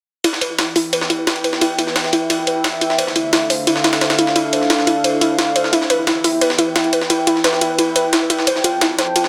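This excerpt of dark, technical drum and bass opens on a warbly, dusty pluck playing chorused arpeggios with tape echo. Its lo-fi square and sawtooth tone carries a noise layer, and it arrives alongside a gritty, pitched-up breakbeat kit and a layered electronic hi-hat. The sampler-style kit sits up front, compressed, with a high-tuned snare and high-passed cymbals and hats, while the electronic hats are bright and low-pass filtered. At 0.9 seconds a sweeping, resonant pad enters with sustained chords, built from detuned sawtooth, triangle and sine layers over a sub octave, with a slow attack, long release and chorus. The harmony moves from Em to Dmadd9 and back, reaching F near the close, under a futuristic, aggressive mood wrapped in a moderate, lush hall reverb.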